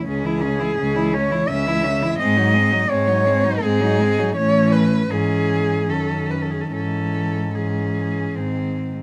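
A dark, up-front cello carries the melody with vibrato and a smooth sul tasto top, over a woody bass cello and two warm, airy-bowed cellos on the second line and accompaniment, in a solemn, melancholic classical passage for cello ensemble in C# minor that moves in a rubato 3/4 at 70-86 BPM through C#m, G#7 and Amaj7 under light reverb, about 9 seconds cut from a longer piece.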